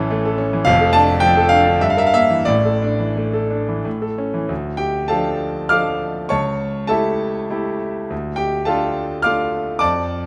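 Passionate and stormy, this brief romantic character piece for solo piano sits in D minor and moves in a flexible, rubato three-four between 84 and 108 BPM. A clear concert grand, up front with a deep bass and a smooth, vintage character, spans F1 to F6 and plays throughout the full 10.3 seconds, its opening phrase hovering around A and a suspended A chord before settling onto D minor at 4.5 seconds for a second idea that passes through A7 over C sharp and returns home to D minor. The piano sits in a wet recital hall, its resonance lingering around each chord, and this fragment is cut from a longer piece.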